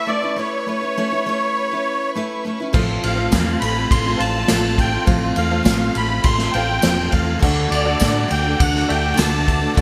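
Open-road and jangly, this folk rock and heartland rock excerpt opens with a reedy, shimmering musette accordion carrying the melody over a full-bodied picked steel-string acoustic guitar and a smooth, bowed studio string section holding sustained chords in the background. At 2.7 seconds a worn, slightly detuned upright piano, a round, dark fingered electric bass and an up-front unplugged drum kit with dark cymbals, a punchy kick and gated reverb join in; a twangy, slightly broken-up electric guitar riff with ensemble chorus follows, and a jingly tambourine enters at 3.3 seconds. The whole sits in a lush hall reverb with bright 1980s-style digital production.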